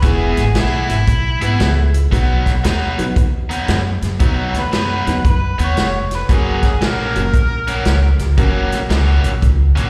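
A distant, roomy harmonica leads this swaggering, soulful electric blues shuffle in B major at 115 BPM, taking a jazz-style solo with light vibrato, scooped notes, overdrive, slapback echo and analog delay until it drops out at 8.4 seconds. Underneath, a bright, picked overdriven guitar riff with slapback echo and a dark, boxy upright piano with its own slapback move over E, B and F# chords, while a woody, up-front pizzicato upright bass and a punchy vintage drum kit with a rolled-off top keep the swung shuffle going. The whole excerpt sounds like a live gig heard through a venue's PA, with recital hall reverb, and it is cut from a longer piece.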